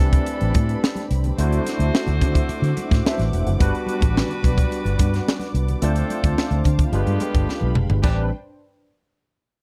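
A straight 4/4 groove at 108 BPM drives this short cut from a longer piece of polished 1980s jazz-funk pop in A minor, slick and urban in mood. A crisp fusion drum kit sits up front with a punchy kick, a high-tuned snare, hi-hat, toms and crash cymbal, rounding off with a fill at 7.5 seconds. A vintage foam-muted fingered electric bass, dark and round, shares the front of the mix, while very quiet congas with a thin skin add a bright, medium-tuned percussion layer. A barky tine electric piano, lightly overdriven through a combo amp with medium tremolo and ensemble chorus, carries the accompaniment and slips in a fill at 2.8 seconds. A clear horn section with light vibrato plays a second line, and a dark, soft-attack bowed string section holds sustained chords in the background through the progression from Am11 through D9, Gmaj7, Dm7 and G7b9 back to Am11. The dry, close studio sound keeps the whole band tight and immediate.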